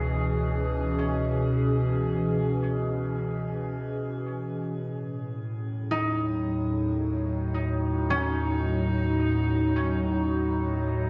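In free time, this spacious, melancholic ambient fragment sets a warbling, nostalgic, detuned tape-like pad up front, holding sustained chords from C#m7 to D#dim at 4.8 seconds through chorus, phaser and shimmer reverb, while a fingerpicked concert harp rings out arpeggios through tape echo and a deep, ominous rumbling drone anchors the bass, all in a wet concert hall with a dark production, tuned to A4 = 445 Hz.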